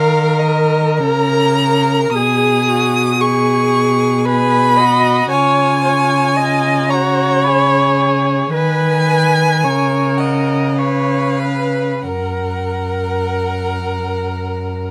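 Close, detailed microphones and light reverb frame this lyrical, romantic string quartet passage, cut from a longer piece and moving in an unhurried, rubato three-beat lilt. A tender first violin sings the melody with vibrato, a soft attack and expressive portamento, while a distant, sonorous second violin carries a second line and a mellow viola fills in the accompaniment with its own vibrato and sliding expressiveness. Up front, a full-bodied cello holds a smooth, even bass as the harmony settles onto the home chord at 12.0 seconds.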